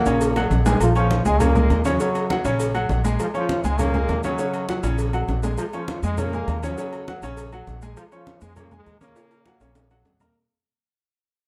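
A bright trombone section with light vibrato carries the melody up front in this passionate, danceable salsa cut from a longer piece, moving at 201 BPM in Bb minor over chords that alternate between Bbm7 and Gbadd9. A brilliant, intimate upright piano with audible action noise and short sustain plays close accompaniment, while a woody pizzicato upright bass sits up front beneath it. Congas, tight high-tuned cowbell and bongos, and ringing agogo bells and timbales fill the background, and grainy, saturated maracas add their own texture. Drum fills arrive at 0.4, 4.7 and 9.2 seconds as the whole passage fades out from 0.8 seconds in a dark production with light reverb.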